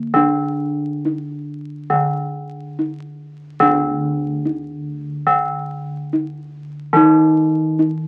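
Round, beating bossed gongs stand up front in this short fragment of Javanese gamelan, holding down the bass from the opening moment to 8.1 s. Alongside them, a bronze metallophone struck with a horn mallet plays the accompaniment in a bright, ringing voice that sits a touch lower in the mix. The mood is stately and hypnotic, moving in an even, straight four. The passage shifts to a new section at 3.6 s. A wet studio reverb surrounds the metallic bronze tones, and the whole passage comes through the crackle of a very old 78 rpm record.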